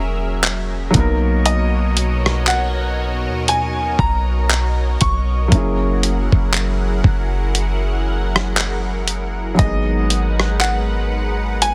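Set in a digital ambience with a dense, heavily limited modern master, this late-night, sensual contemporary R&B excerpt layers a felt-muted upright piano's soft accompaniment, audible action noise and all, with a lush, detuned unison pad treated with chorus and phaser over a deep, boomy 808-style bass, while a gritty sampler-style soul kit of thumpy kick, hi-hat, rim click and handclaps enters at 0.4 seconds with a swung feel and a clear baby grand piano takes the melody from 1.5 seconds.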